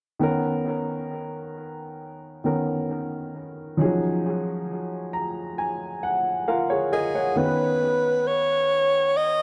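A straight 4/4 pulse at 67 BPM carries this sensual, late-night R&B excerpt, where a natural, up-front baby grand piano with analog delay supports the harmony through Bmaj9/D#, Ebm11 and Badd9/D# and adds a fill from 4.7 to 7.4 seconds, before a breathy, whispered alto saxophone, close-miked and intimate with jazz-style vibrato, subtone and a soft attack, enters at 6.9 seconds with its own analog delay, the pair sitting in an echo-heavy mix bathed in moderate echo chamber reverb.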